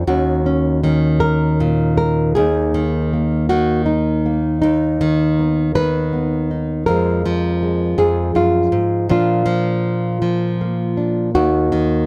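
Folk for solo fingerstyle nylon-string guitar in Eb minor, melancholic and wistful, moving at a rubato 53 BPM in 6/8 and tuned to A4 = 438 Hz, the thumb-plucked classical guitar sits up front with a warm tone, audible finger squeak and light reverb as it ranges from Eb2 to B4 through a brief opening on Ebm7 before a longer passage from 2.4 s that turns through Eb5, B/D#, Fmadd11 and Bb to settle on Ebm at 11.3 s in this fragment cut from a longer piece.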